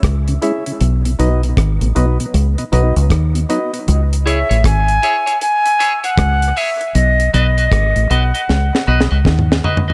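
Dub reggae at 78 BPM with a swung sixteenth feel, heavy and spacious, moving between C# minor and B in this short cut from a longer piece. A foam-muted, round fingered bass sits up front over a dry reggae kit with a tight kick and high-tuned snare, while a mellow tonewheel organ with slow rotary and chorus vibrato lingers in the background until 3.8 seconds, and hollow, percussive organ stabs with dub echo carry on under a long filter sweep. At 4.3 seconds a pure, straight-toned concert flute takes the melody beside a clean, picked electric guitar, both touched with dub echo, and a drum fill arrives at 8.5 seconds.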